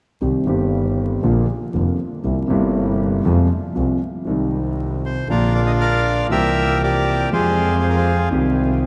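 Tango with a dramatic, melancholic mood, played with a rubato feel in 4/4 and cut from a longer piece. A concert grand piano carries the accompaniment from the start, its tone warm and intimate, with audible action noise, deep bass and a smooth, vintage character placed up front. A single bowed double bass plays the bass line beneath it, clear and intense, with vibrato, an airy bow and a boxy quality. At 5.1 seconds a bandoneon enters with the melody, reedy, bright and full, close-miked and dry yet touched by tape echo, and it stops at 8.3 seconds. The chords cycle through the same four-chord pattern twice, and the performance sits in a vast, echoing cathedral space with vinyl crackle beneath it.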